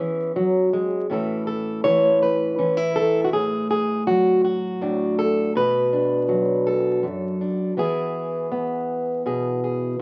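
Set in 6/8 with a straight feel, this gentle folk piece moves at 54 beats per minute, counted in dotted quarters, and is cut from a longer piece. A single fingerpicked, plugged-in steel-string acoustic guitar plays solo throughout, its jumbo body giving a dark, full-bodied tone that sits up front and spans from F#2 to C#5. In the key of A major, it opens briefly on an E6 chord before settling at 1.1 s into a peaceful progression of A, D over A, B minor and E. A moderate studio reverb lends a sense of space, while the sound carries the character of a very old 78 rpm record, with vinyl crackle adding an aged patina to the calm, unhurried mood.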